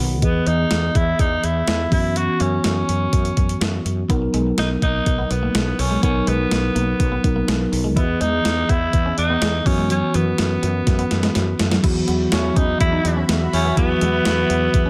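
A raspy, gritty tenor saxophone carries the melody up front in this romantic, glossy 1980s-style pop excerpt, its line treated with digital delay. It rides a straight 4/4 groove at 124 BPM from a 12-bit digital drum machine, with a thumpy kick and medium-tuned snare given an overdriven edge and placed forward, while a woody, growly fretless electric bass and a mellow tine electric piano hold down the harmony through Emaj7, F#7sus4 and Bmaj7. The electric piano opens with a fill at 0.0 seconds, and at 4.1 seconds a bright, twangy clean electric guitar slips in behind with a picked riff under a subtle chorus. A drum fill leads into a new section at 11.8 seconds, where the harmony shifts to Esus2 and a lush, nasal sawtooth unison pad with chorus adds soft, sustained chords in the background. Light reverb wraps the whole in a digital ambience, and the passage is cut from a longer piece.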